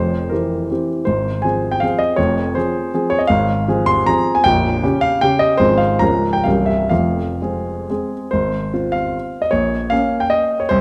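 A grand piano carries this short classical fragment alone, its intimate, up-front tone marked by audible action noise and a short sustain. The piece is a romantic triple-time dance in 3/4 with dotted rhythms, set in F minor and played with rubato, so the pulse moves between about 115 and 170 BPM. The mood is nostalgic yet capricious. The harmony circles F minor, touching a G diminished chord over Bb and a C7b9 before settling back on F minor at 6.9 seconds. A new passage begins at 8.3 seconds and closes on a Bb minor chord with an added eleventh. The piano spans from Bb0 up to C6 in a natural-sounding recital hall with moderate reverb.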